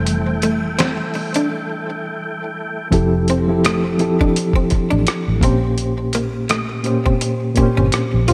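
A reedy electric piano with fast tremolo opens this relaxed, sensual neo-soul R&B excerpt at 84 BPM in F major, taking a solo until 2.9 seconds over a lightly overdriven tonewheel organ with slow rotary swirl and key click, a dark, round, foam-muted electric bass, and a gritty, compressed sampler-style drum kit with a thumpy kick that enters at 0.1 seconds. A clean, hollow-body archtop guitar adds a picked second line with digital delay from 0.4 seconds, and the organ's sustained chords fall away at 2.9 seconds as the harmony moves from Fmaj9 to Bbm6 at 5.4 seconds. The swung sixteenth-note groove sits in a lush hall reverb with a bright 1980s-style digital sheen, with the tremolo keys and tape-tinged drums up front.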